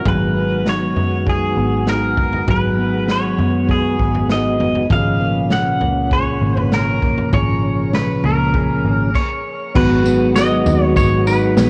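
A twangy, up-front pedal steel guitar carries the melody with fingerpicked slide lines and volume swells through analog delay and shimmer reverb in this ethereal, hazy dream pop excerpt at 99 BPM, over flute-like tonewheel organ chords turning on a slow rotary speaker with chorus vibrato, dark fingered electric guitar arpeggios with subtle chorus, a round, foam-muted bass with tube saturation, and a vintage kit with a punchy kick, dark cymbals, tambourine and toms, all in a cassette home-recording haze with spring reverb, until a brief stop at 9.1 seconds gives way to a new section on G#m7 at 9.8 seconds.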